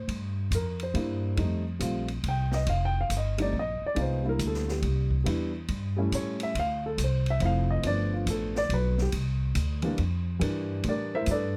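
A dark baby grand piano carries the melody and takes a solo for the entire 11.6 seconds, its mellow, intimate tone sitting up front with short sustain and audible action noise. This is a sophisticated, playful jazz piano trio in 3/4 at 139 BPM, swung in C mixolydian. A pizzicato upright bass with steel strings gives a woody, thumpy low end, also placed close to the listener. An open acoustic drum kit joins at 0.1 seconds, sitting lower in the mix, with dark ride and hi-hat cymbals, a medium-tuned snare and a boomy kick in a natural studio-room sound. The harmony opens on Fsus24, moves through C9 and F9, and then runs Em7, A7, Dm7 and G9 back to C9. Close, detailed microphones and little reverb make this fragment of a longer piece feel dry and immediate.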